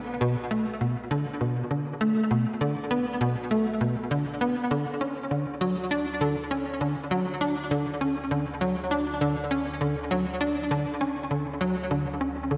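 Soaked in a lush hall reverb, this dreamy, cosmic excerpt of sequencer-driven space music floats in a hypnotic haze. An analog drone sits low in the background, its detuned sawtooth and pulse-wave layers evolving through pulse-width modulation and chorus, mellow and sustained with a slow attack and long release as it fades in across the whole passage. Up front, a tight sequencer bass riff enters at 0.2 s, punchy and driving, its sawtooth and square-wave tones sharpened by ring modulation and a plucky filter with a fast, decaying attack. Subtle chorus and tape echo give that riff a faint shimmer inside the reverberant space. The harmony moves from Bm to D at 4.7 s, and both parts carry on until the cut at 12.6 s.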